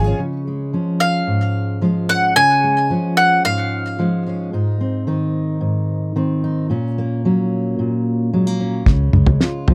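A dark, full-bodied fingerpicked steel-string acoustic guitar opens this anthemic indie folk excerpt in Db major at 111 BPM, moving through Db, Ab and Gb/Bb under light reverb, with a round, punchy fingered electric bass touching in at the very start. From 1.0 to 4.2 seconds a bowl-back mandolin carries an up-front, double-strung melody through digital delay. At 8.9 seconds the bass returns and a dry, cloth-damped drum kit with a fat snare and tight kick plays a fill across kick, snare and toms as the chords land back on Db.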